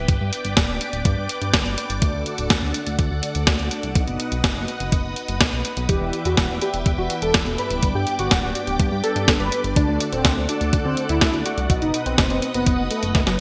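The recording has a bright, 1980s-style digital sheen set in a lush hall reverb, with a bittersweet, nostalgic italo disco feel in a straight four. A string machine holds sustained chords from the start, its full, vintage ensemble tone built on sawtooth with a sub octave and ensemble chorus, while a chorused synth bass underpins it with a glossy, nasal pulse-wave sound that stays dark and sustained. An electronic kick thumps along, re-recorded in a large room, and a clean 12-bit drum machine places its medium-tuned snare and hi-hat up front, washed in gated reverb. From 2.0 seconds, mellow synth brass adds round, detuned stabs with chorus and phaser, sitting in the background. A thick, bold unison lead enters with the melody at 5.9 seconds, its detuned, wave-folded tone carrying vibrato, ensemble chorus and digital delay over chords moving through G, D, B and Em7. A drum fill at 13.1 seconds closes this excerpt from a longer piece.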